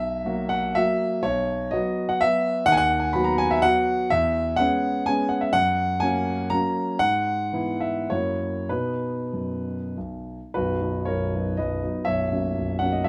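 Close, detailed microphones place the concert grand up front in a moderate recital hall, whose reverb adds a gentle halo around each chord. This is a romantic classical dance in triple time, proud and graceful, played on solo piano with dotted rhythms and a flexible, rubato feel. The piano's tone is open and warm, with a deep bass that reaches down to B0. The opening phrase circles its home harmony through the dominant seventh and arrives at a cadence at 8.7 seconds. A new section begins at 10.5 seconds, and the recording breaks off at 13.1 seconds, leaving a brief fragment of a longer piece.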